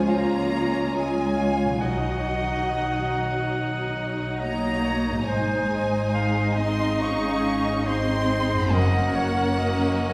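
From the first moment, the whole orchestra sounds together in this hopeful, moving cinematic passage, cut from a longer film score and unfolding with a rubato feel at 70 BPM in 4/4. A close, focused studio violin section carries the melody with vibrato, while a bright solo clarinet, an airy flute section and a more intense symphonic violin section set further back add second lines. A clear viola section supplies the accompaniment, a warm French horn section holds tight sustained chords in the background, and a ringing, thumb-plucked concert harp spreads arpeggios across a broad span. Underneath, a dark, woody cello section with a soft attack and a smooth, distant double bass section form a lush bowed foundation. The harmony moves from Db through Cb and Ab to Gb, and a wet concert hall reverb places the listener further back in the room.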